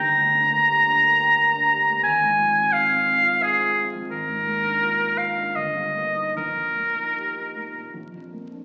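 Romantic classical duo in Eb major, tender and warm, moving in a rubato 3/4 between 73 and 90 BPM and cut from a longer piece. A clear, up-front oboe sings the melody with light vibrato in a classical style, while a dark, mellow baby grand piano accompanies with smooth, long-sustaining chords from Gm through Fm/Ab and Bb7/Ab to Eb/G. The oboe stops at 7.9 s, leaving the piano to ring alone on Bb until 8.6 s, all set in a wet recital hall and heard through the crackle of a very old 78 rpm record.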